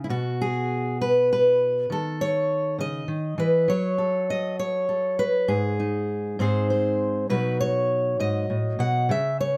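In a loose, rubato 6/8, a lone fingerpicked steel-string acoustic guitar plays a melancholic, haunting folk passage cut from a longer piece, opening on a chordless phrase before settling onto C#m9 at 1.9 seconds and moving through F#m, G#5 and G# to close on B. The guitar's tone is dark with an auditorium character, placed up front in a moderate studio reverb.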